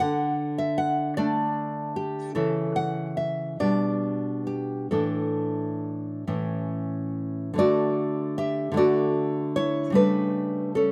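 A fingerpicked nylon-string guitar sits up front in this tender, nostalgic romantic piece for solo classical guitar, its fresh strings giving a deep, warm tone with audible finger squeaks. In D major and a rubato 6/8 at roughly 44-52 BPM in dotted quarters, it moves from D through C#madd11, G/B and a suspended A before resolving to A. A new section begins at 7.6 seconds on D, turning to A7/C# at 10.0 seconds as this excerpt from a longer piece ends, all under a light reverb from an outdoor recording.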